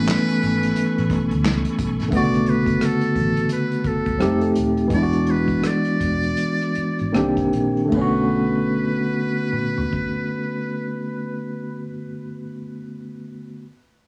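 A sultry, introspective neo-soul R&B excerpt in B dorian opens with a buzzy, close-miked metal-muted trumpet singing a jazz-style solo with vibrato and scooped notes through tape echo, over a barky, up-front tine electric piano with fast tremolo, a reedy organ with overdrive and fast rotary speaker that drops out at 2.1 seconds, a dark, round foam-muted fingered bass, and an unplugged acoustic drum kit played with bundle sticks (punchy kick, snare, hi-hat, ride, toms, rim clicks and handclaps), all swinging at 75-88 BPM before the groove slows from 2.1 to 7.9 seconds through rich ninth chords, with the trumpet, piano and organ carrying a tape-hazed cassette sound from a home recording in a small room.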